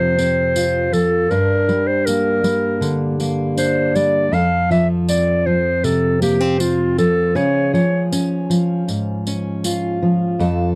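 A classical-style clarinet solo and a full-bodied fingerpicked dreadnought guitar open this pastoral, hopeful acoustic folk excerpt at an easy 79 BPM in 4/4, both up front in a dry, close 1970s-style studio sound, with a softer jingly tambourine entering at 0.2 seconds as the harmony moves from F through Gm and back to F before shifting to Db, and the warm clarinet line falling away at 8.1 seconds while the guitar carries on.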